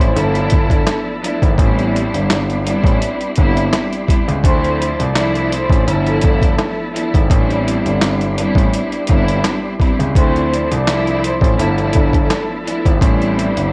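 Worn, warbling cassette tape with drifting pitch and a dry, close sound frames this moody, gritty boom-bap hip-hop fragment at 84 BPM in A minor, its 16ths lightly swung over a G13, Am11 and Dm7 cycle. Up front, a compressed, pitched-down sampler kit pairs a thumpy kick and medium-tuned snare with hi-hat and handclaps, while a dark concert grand carries the bass in mellow, tube-saturated low notes and a lush bowed string section adds smooth, vibrato-rich ensemble chords. A soft-mallet vibraphone with fast motor vibrato rings out a metallic, tape-echoed melody until 12.5 s, and a clean tonewheel organ holds sustained chords through a fast rotary speaker in the background.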